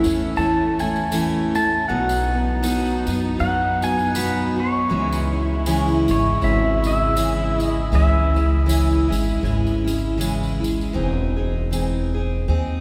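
Acoustic folk at a slow, gently swung 79 BPM in this peaceful fragment from a longer piece, where a clean, fingerpicked pedal steel guitar carries a singing solo line from 0.4 s over a bright, full-bodied picked acoustic guitar and a woody, thumpy pizzicato upright bass, while a sul tasto chamber string section holds soft sustained chords in the background and a jingly tambourine adds light percussion, all bathed in the long, wet reverb of a church or concert hall as the harmony moves from A through B to C#m and the guitar and bass carry on alone to the close at 12.8 s.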